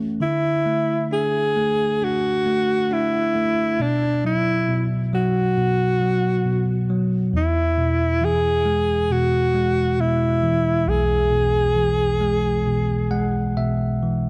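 Hopeful and heartfelt, this brief cut from a longer pop ballad moves at a slow 68 BPM in a straight 4/4, with a bell-like, clean tine electric piano sitting up front as accompaniment over chords moving from Dadd9 to B5 to Eadd9. A clear alto saxophone carries the solo melody in a jazz style, shaped with vibrato, subtone and scooped notes, as the electric piano closes with a fill from 12.7 s to 14.3 s. Light reverb and small room ambience frame a dark, warm production.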